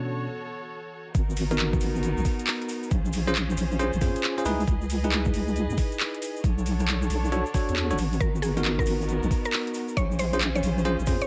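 Bell-like electric piano stabs with digital delay and veiled, muted violin chords open this skippy, late-night two-step UK garage cut at 136 BPM in G# dorian through the break, and at 1.1 seconds a knocking, overdriven electronic kick arrives together with a deep, dark wobble bass with chorus and sidechain pumping, metallic-hatted garage drums with handclaps and rim clicks, and a grainy egg shaker, while a woody mallet-like synth pluck with tape echo arrives at 8.2 seconds over minor-ninth chords in a digital ambience.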